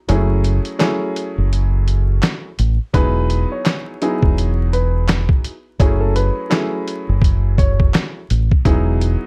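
A warm baby grand piano tinted by cassette tape and plate reverb, a round, up-front dub fingered electric bass and a compressed, pitched-down sampler-style drum kit with a thumpy kick, medium-tuned snare, hi-hat and handclaps open this moody, gritty boom-bap hip-hop excerpt together at 84 BPM in F# dorian, swinging over F#m7 and Emaj7 chords until a dark, mellow, woody upright piano adds a slapback-echoed melody from 2.9 s to 7.9 s, the whole mix coated in vinyl crackle.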